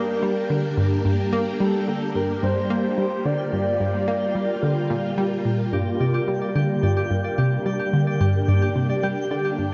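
A dark, softly glowing production sits in a moderate plate reverb, giving this short excerpt of ambient, sequencer-driven space music a hypnotic, mysterious air over one unchanging chord. Up front, an analog pluck carries the low riff, its round, detuned tone thickened by chorus and analog delay. Behind it, a vintage phased string machine holds swirling sustained chords, while a twinkling granular texture scatters FM sparkle and octave-up shimmer through its own built-in reverb. A breathy, flute-like synth lead with gentle vibrato sings the melody from the start until 5.2 seconds, bathed in lush chorus and analog delay. At 5.7 seconds a ringing concert harp enters with fingerpicked arpeggios, carried along by analog delay.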